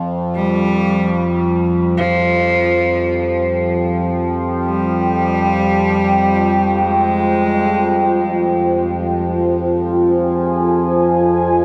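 Dark ambient drone, desolate and cavernous and cut from a longer piece: a resonant sawtooth-and-sine drone with moving overtones sits up front from the start, a detuned analog pad with a sub octave holds sustained chords under chorus, and a reedy, gut-string cello with light vibrato carries a bowed melody from 0.4 s to 8.4 s through diffuse ambient delay, inside a huge, wet reverb with an 8.4-second tail.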